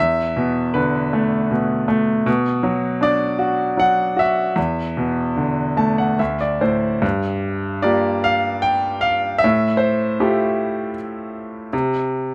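Intimate and up front in a light reverb, with the piano's action noise clearly audible, this melancholic, wistful fragment of lyrical classical music features a brilliant grand piano playing alone in a rubato 3/4 at 70-81 BPM, moving through chords such as E7sus4 and Bm, adding a fill from 5.4 to 7.0 seconds, and settling into G dorian at 7.0 seconds over Gm7 and Fmaj9/A.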